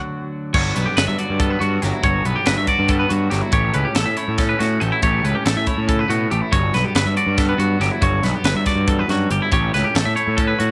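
This playful, wistful math rock and midwest emo piece runs at 281 BPM in eighths, in 7/8, and is cut from a longer work. A compressed twelve-string electric guitar sounds a D chord alone before the other parts arrive at 0.5 seconds: a twangy guitar playing bright, clean picked arpeggios, a warm overdriven fuzz bass, and an airy, polished fusion kit with a high-tuned snare, punchy kick and dark cymbals. Together they cycle between Gmaj7 and A7, with the arpeggios, bass and drums up front in a studio reverb.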